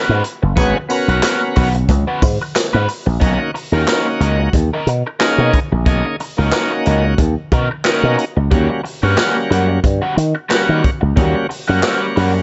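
A cool, funky groove at 90 BPM in 4/4 with a light 16th-note swing rides on a swinging big-band drum kit with boomy kick, medium-tuned snare, hi-hat and handclaps, under a growly, punchy slap bass with an envelope filter up front, a raw garage guitar with wah and overdrive, shouting tonewheel organ stabs through a slow rotary speaker, and a jingly tambourine in the background until 3.1 s, all in a small room as the chords move from G#m11 to Bmaj9 at 3.2 s and D#7#9 at 8.5 s in this piece cut from a longer one.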